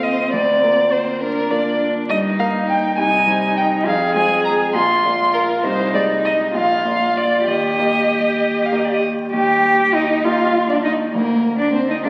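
An expressive, up-front violin sings the melody with vibrato and sliding portamento over a woody, close cello second line and a clear, intimate concert grand whose deep bass, long sustain and audible action noise fill out the accompaniment in this spirited, cheerful classical-period piano trio movement in Eb major, moving at a quick 67 BPM in dotted quarters in 6/8, heard through a wet concert hall and the crackle of a very old 78 rpm record, and cut from a longer piece.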